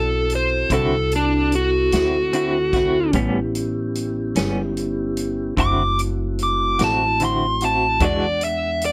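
In 12/8 slow-blues time, this gritty, rollicking excerpt puts a dark, overdriven lead guitar solo up front over a mellow, flute-like tonewheel organ turning through a slow rotary speaker and a woody, growly pizzicato upright bass, with a vintage drum kit with a punchy kick and a rolled-off top entering at 0.3 s and a clean, scooped semi-hollow guitar with tremolo joining at 0.7 s, the band moving through D9, A9 and E9 chords in light reverb.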